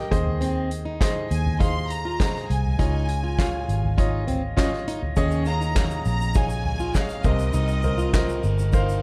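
A lush, focused violin section carries the melody with vibrato from the start, set over a clear concert grand piano with deep bass and short sustain that adds a brief fill at 8.7 seconds, in this uplifting, warm piano-driven pop excerpt at 101 BPM in Ab major. A round, foam-muted vintage electric bass and a distant, roomy drum kit played with soft mallets, including punchy kick, snare, toms, hi-hat, ride, crash and handclaps, support a woody fingerpicked steel-string acoustic guitar riff that enters at 0.4 seconds. A grainy tube shaker joins in the background at 5.2 seconds as the chords move from Ab/Eb through Dbadd9 to Eb7sus4 and Cm7, all within a dark production and small room ambience.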